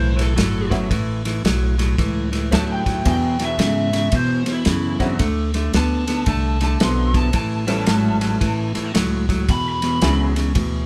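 This electric blues shuffle has a soulful, swaggering swing, and it is cut from a longer piece that opens straight into a lead guitar solo. The solo comes from a picked, overdriven guitar through a small cranked amp, lo-fi in character, and it runs until about 10.2 seconds. Underneath, a dark, clean, fingered electric guitar plays an up-front riff, while a woody pizzicato upright bass with steel strings anchors the low end. A soul drum kit with tight kick, medium-tuned snare and ride cymbal enters at 0.2 seconds, sitting up front with a rolled-off top and a pumping room sound. From 0.7 seconds a detuned, jangly honky-tonk upright piano adds bright vintage accompaniment as the band plays live in one room with light reverb, moving through A9, E9, D9, then back to A9 and E9.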